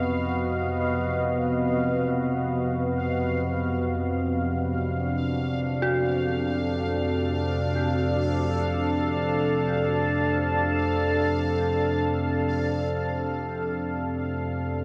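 Soaked in a huge, wet reverb with a cassette-tape character, this fragment of an ominous, vast dark ambient drone drifts in free time, its chords moving from B to D at 3.9 seconds. A deep, moody pad of detuned sawtooth unison with a sine sub octave sits up front beside a chorused analog drone of evolving, detuned pulse-width waves that fades in, while a resonant, bubbling texture of random filter steps hovers high above them. From 5.8 seconds an eerie, inharmonic FM bell with a vintage warble plays arpeggios in the background through a diffuse delay, and the piece fades out from 10.8 seconds.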